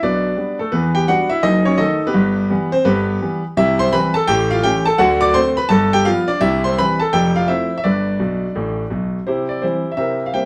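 Stride piano jazz at a brisk 169 BPM in 4/4, this exuberant, swinging excerpt, cut from a longer piece, features a solo grand piano playing throughout its 10.5 seconds. The piano has a clear, smooth, vintage tone and sits up front, ranging from F1 up to D6 with a buoyant swing on the eighth notes. The harmony opens on G/B and moves through Em7, D#dim/F# and Em/G before settling into C major at 3.6 s, then runs a cycle of A7, D7 and G7 back to C, Fmaj7 and G. At 8.2 s the piano launches a fill that carries into a new section at 9.3 s, landing on C. A wet studio reverb with a short 0.7-second decay gives the sound the feel of a live performance in a single room.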